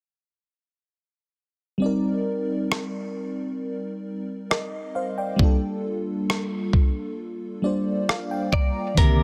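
Late-night and longing, this contemporary R&B excerpt opens at 1.8 seconds on a dreamy, detuned FM electric piano with a soft pad layer, chorus and tremolo, moving from Cm9 to Gm9 and adding a fill near the end, joined up front by a gritty, compressed soul sampler-style kit of thumpy kick, hi-hat and rim click, before a clean, direct electric guitar melody with tape echo enters at 8.5 seconds and, at 9.0 seconds, a thick sawtooth unison pad, a fingerpicked nylon-string guitar and a deep, boomy 808-style bass arrive in a dry, dense, heavily limited mix.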